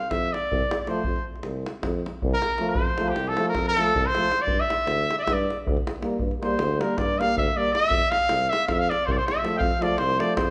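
Exuberant and wild, this Balkan brass band excerpt in F major races along in 9/8 at 316 BPM in eighths, with a punchy, vibrato-laden trumpet soloing up front from the start over a deep, acoustic davul and a warm tuba bass with light vibrato. From 0.9 seconds a clear French horn with vibrato and a mellow euphonium add classical-style accompaniment in the background, as the harmony moves from F to G minor at 4.5 seconds and back to F. A moderate recital-hall reverb lends the trumpet, euphonium and tuba a distant, roomy sound, while the davul sits in a small-room ambience.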